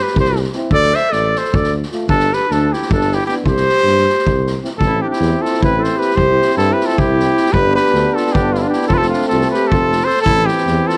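A festive, virtuosic Balkan brass band piece in 7/8 at a brisk 308 BPM in eighths opens with a close-miked cornet carrying the melody up front while a smooth-topped clarinet plays a soft-attacked second line beneath it, joined at 0.1 s by a mellow tuba bass and a street-band drum kit with a boomy kick and rolled-off top. At 0.5 s a clear euphonium with vibrato and a trombone with light vibrato settle into the background as accompaniment, filling out a C major progression that moves from C and G toward A minor and F once the second section begins at 4.8 s. The sound is detailed and intimate with light reverb, and this passage is cut from a longer piece.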